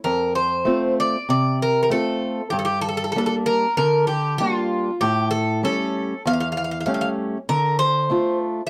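From the first moment, a Greek bouzouki and a fingerpicked acoustic archtop guitar sound together in this brief, brooding Greek folk excerpt, set at a steady 97 BPM in a straight 4/4. The bouzouki carries the melody between F4 and F5, its picked double strings ringing with a metallic edge and some octave-doubled courses. Beneath it, the archtop guitar supplies fingerpicked accompaniment from E2 up to F4, its warm tone marked by audible finger squeak. Both instruments sit up front, captured by close, detailed microphones in a moderate studio reverb, and the bittersweet harmony moves from F to Gm, then A7, settling on Dm at 7.5 seconds. The guitar falls away at 8.6 seconds, and the bouzouki's last note sounds until 8.7 seconds.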